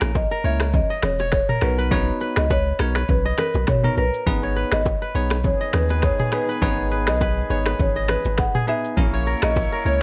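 Mellow and hypnotic, this afrobeats excerpt moves at 102 BPM in 4/4 with a 16th-note swing, sitting in G# minor over chords that pass from A#dim to Bmaj7 and G#m before returning to A#dim. A deep, punchy sub bass with a pitch-drop attack and an electronic afro-pop drum kit sit up front, the kit's deep kick and smooth hats joined by finger snaps, rim clicks, shaker and toms. A bell-like tine electric piano plays clean accompaniment, while a fingerpicked, ringing kora riff carries digital delay. From 0.2 seconds a woody marimba with medium mallets takes the melody, its dark, smooth tone also treated with delay, and ringing bongos and congas stay close and dry in the background. At 5.4 seconds a distant horn section enters with a second line, its light vibrato and octave doubling adding a roomy shade beneath a studio reverb.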